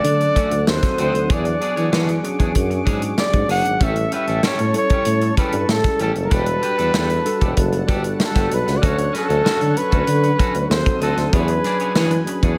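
A breathy, close-miked flugelhorn carries the jazz-style melody with vibrato up front in this nocturnal, bittersweet slice of polished 1980s jazz-funk pop at 96 BPM, moving over a Dmaj7, E13 and Em11 progression. A warm tuba plays the bass line with light vibrato beside an up-front studio drum kit with a tight kick and gated reverb on hi-hat, kick and snare, while a mellow tine electric piano with subtle chorus sits in the background. A thick, warbling unison pad with slow attack and a twangy, slightly broken-up picked guitar riff with lush chorus, entering at 0.2 seconds, fill out the small room.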